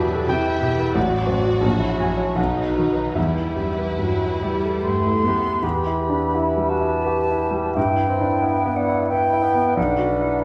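This passionate, lush passage from a Romantic movement for piano and orchestra opens with the clear concert grand piano carrying the melody up front, its deep bass, long sustain and audible action noise giving it an intimate, polished presence. Beneath it sits a string body of violins, violas and cellos: a warm violin section in the background also carries the melody, a darker violin section traces a second line with soft attacks, the violas add rich accompaniment in the background and the cellos supply a focused bass from the background, all bowed with vibrato. In E minor and 3/4, the music moves with rubato between 68 and 91 BPM, passing through diminished and dominant harmonies before settling back on the home chord. At 4.8 seconds an airy silver flute enters with a second line, and by 5.6 seconds the strings have fallen away as a distant, roomy cor anglais, a very quiet clarinet and a soft-edged bassoon join the piano. 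The wet recital-hall reverb lends the whole a spacious concert setting as the passage turns toward B minor near its close.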